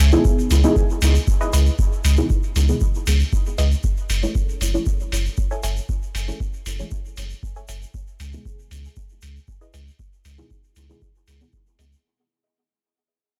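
A round sine sub bass with tube saturation and sidechain pumping opens this nocturnal, cavernous dub techno cut at 117 BPM, joined at once by a dark, detuned chord stab soaked in chorus, phaser and dub echo, a grainy shaker, a tape-warm analog kick placed up front, and a muffled, pitched-down hi-hat. From 1.4 seconds a crisp, unison wavetable stab adds a faint second layer with its own dub echo and pumping, while the harmony moves from C#m7 to F#m7 and back. The whole passage fades out as a filter sweeps across the synth stab, all set in a gritty digital ambience.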